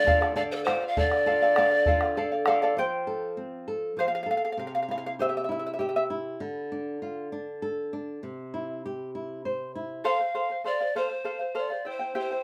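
A breathy bamboo pan flute carries the melody in this earthy, melancholic Andean folk excerpt in 3/4, its tongued, chiff-edged tone both distant and expressive as it opens the excerpt and returns at 10.0 s. A shimmering, fingerpicked charango with double strings, some octave-doubled, sits up front and takes a solo from 2.8 s. It plays over a boxy flamenco guitar with audible finger squeak, while a round bombo sounds only in the opening seconds, all set in a wet studio ambience.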